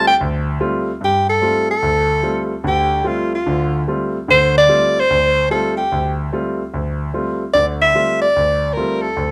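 Searching and hypnotic, this swung jazz excerpt at 147 BPM sets a warm, close-miked soprano saxophone melody, rich with vibrato, subtone and scooped notes, up front over clear concert grand piano accompaniment with deep bass, both bathed in a moderate large-studio reverb around a G9sus4 chord.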